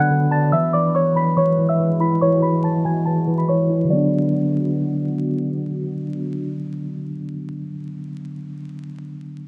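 A pure, gentle FM synth bell carries the melody up front with a fast, decaying attack and a chorused shimmer before dropping out at 5.1 seconds, in this brooding, hard-hitting half-time hip hop fragment at 142 BPM in B dorian. A clean, mellow tine electric piano plays the accompaniment through its built-in speakers, while a deep, moody pad of detuned sawtooth and sub-octave sine layers holds slow-blooming chords beneath, moving from Bm to Eadd9 and back. The dark production adds vinyl crackle and light reverb, with a filter sweep running through the opening 3.9 seconds and the electric piano lingering alone until 9.5 seconds.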